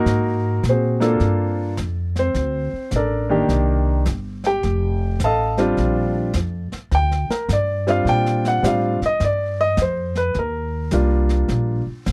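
Dry and close in a 1970s studio manner, this swinging, sophisticated jazz piano trio excerpt puts an intimate baby grand piano up front as the soloist, its natural tone carrying audible action noise, over woody, thumpy pizzicato upright bass and a quieter brushed drum kit with a medium-tuned snare and hi-hat, while the harmony moves through rich chords from Ab9 to an Ebmaj9 arriving at 10.4 seconds.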